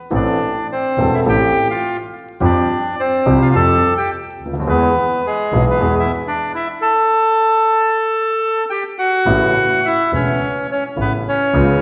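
Heard through a wet hall reverb and vinyl crackle, this tense, sultry tango excerpt unfolds in a free rubato as an up-front, reedy bandoneon with a boxy small-room tone carries the melody over a warm, deep-voiced concert grand with long sustain, while a close, focused double bass, bowed by one player with vibrato, anchors the low end before the music turns to a new section at 9.3 seconds.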